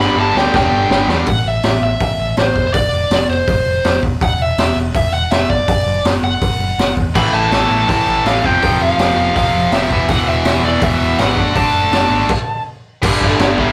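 A straight 4/4 punk rock drive at 163 BPM opens with a drum fill on a raw garage kit, its high-tuned snare and punchy kick gritty and up front, while a growly overdriven picked bass and a bluesy, warm-toned lead guitar carry the energetic, rebellious excerpt throughout, three bright distorted rhythm guitars drop out after about 1.3 seconds and return near 7.2 seconds with riffs over chords moving from A5 through F5 and E5 to D/F#, and a stop at 12.3 seconds cuts the band short in a rough rehearsal-room sound with light reverb and tube saturation.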